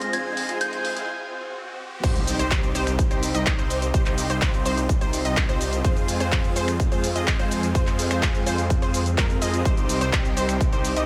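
Bathed in light digital reverb, this anthemic, euphoric festival progressive house cut opens with a pure, mellow FM bell melody, a thick detuned pad and a huge phased supersaw riff sweeping through a filtered build-up and brief break with background risers and swells, then drops at 2.0 seconds into a punchy up-front kick, a layered big-room kit of claps, snaps, cabasa, hi-hat and crash, a saturated detuned saw bass, a bright pumping unison pluck arpeggio and a background impact.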